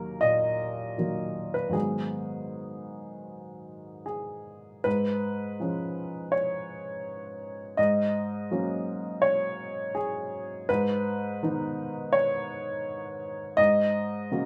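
Rubato phrasing in a loose 4/4 gives this wistful, melancholic neoclassical minimalist piano fragment a gently unhurried pulse. A solo upright piano plays throughout, from 0.0 to 14.5 s, sounding woody, intimate and slightly detuned, with audible action noise and an up-front, natural presence in light reverb. The opening passage gives way to a new section at 4.9 s, where the harmony settles over a recurring G# bass beneath shifting chords.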